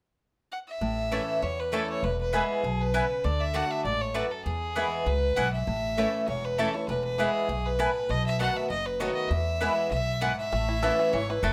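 A swung 4/4 pulse at 198 BPM drives this joyful bluegrass excerpt in A major, with a woody, thumpy upright bass and a boxy, picked old ladder-braced acoustic guitar arriving at 0.8 s beneath an up-front fiddle melody that is clear and smooth on top with light vibrato. A bright, double-strung mandolin adds stabs from 1.1 s, and a twangy, fingerpicked bluegrass banjo joins with melody at 10.5 s. A moderate small-room reverb frames the playing.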